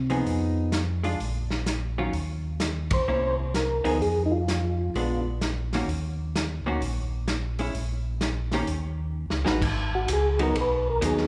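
Soul jazz organ trio in a smoky, bluesy mood, swinging in 4/4, with a dark, round tonewheel organ bass under the slow rotary speaker, a clean, picked hollow-body guitar comping, and a muffled, lo-fi vintage drum kit of kick, snare, hi-hat, ride and crash. A soft, flute-like percussive organ carries the melody with chorus vibrato, entering just after a band accent at 2.8 seconds, and returns at 9.9 seconds for a short solo following a drum fill. Moderate hall reverb lends the fragment a churchlike space around its up-front bass organ, guitar and drums.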